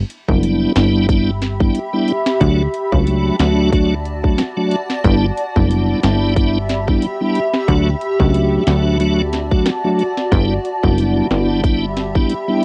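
Recorded at home on cassette with a light reverb, this summery, bouncy dancehall excerpt moves at 91 BPM with a swung sixteenth-note feel, alternating between G6 and D chords. An up-front electronic drum kit with tight kick, sharp snare, metallic hats, rim clicks and finger snaps drives the groove alongside a punchy, funky analog bass whose sawtooth and pulse-wave plucks strike with a fast attack and then decay. A piping, scooped tonewheel organ with key click, chorus vibrato and slow rotary speaker carries the accompaniment, while a cloudy, blurred granular pad enters at 0.7 seconds with sustained chords, its built-in reverb and sidechain pumping sitting further back in the mix.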